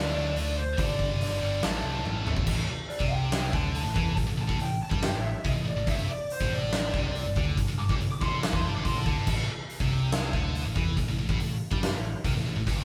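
A straight 4/4 pulse at 141 BPM drives this aggressive, heavy hard rock passage in A minor, cut from a longer piece and played live by a band in one room with a moderate studio reverb. A bright, double-tracked high-gain guitar sits up front with a distorted riff from G2 to D4, moving from D5 to G5 power chords before settling on A minor, while a growly, punchy overdriven bass plays from G1 to G2 underneath. The huge arena drum kit comes in at 0.4 seconds, its natural big-room sound built on a fat snare, a punchy kick, hi-hat, crash and toms, and a drum fill at 2.1 seconds sets up what follows. Present from the very start, a picked lead guitar through a small cranked amp takes a solo between C5 and D6 from 2.5 seconds, its overdriven tone lo-fi and warm. The solo stops at 9.3 seconds as the chords return to A minor, leaving the riff guitar, bass and drums to carry the close.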